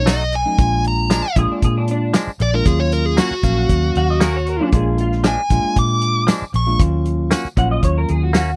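Smoky and brooding, this short cut from a longer straight-eighth soul blues sets a dark, overdriven lead guitar over tine electric piano through a combo amp, a round, foam-muted fingered bass, a punchy soul drum kit with hi-hat, kick, snare and tambourine, twangy direct-recorded guitar stabs with tape echo and a slightly broken-up, lo-fi second guitar line with ensemble chorus entering at 1.4 s, all in a dry, close 1970s-style studio sound, before the clean guitar takes a solo from 6.8 s.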